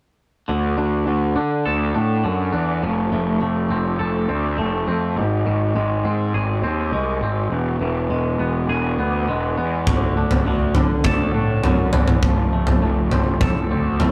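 A clean, twangy electric guitar plays arpeggios over a growly, overdriven fuzz bass from the start of this bittersweet, cathartic quiet-loud alternative rock excerpt, and a huge arena drum kit with punchy kick and toms joins them at 9.9 seconds, all captured in a rough rehearsal-room recording with small room ambience.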